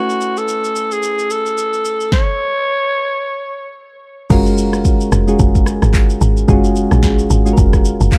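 A growling, breathy alto saxophone melody opens this soulful amapiano piece at 110 BPM, over soft, round electric-piano-like synth keys with chorus playing an Amaj9 chord, while a deep house drum kit with a deep kick, punchy snare, handclaps, rim clicks, shaker and crash settles into a swung 4/4 groove. The raspy, vintage-toned sax with tape echo stops at 3.7 seconds, and at 4.3 seconds the music drops onto F#maj9 as a woody, percussive log drum bass enters, deep in pitch and prominent in the mix as its foundation. The dark, warm production sits in a digital ambience, and this is cut from a longer track.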